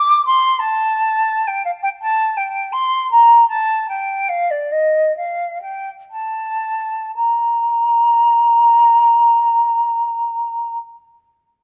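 A baroque-style classical fantasia for unaccompanied flute, this dance-like, radiant fragment from a longer piece moves in a flexible, rubato three-beat lilt. The solo concert flute sounds airy and mellow, with expressive vibrato and tongued notes, and it gradually slows between 0.9 and 7.2 seconds before a new section begins and the line closes at 10.8 seconds. Close, detailed microphones keep the flute up front, wrapped in a light reverb.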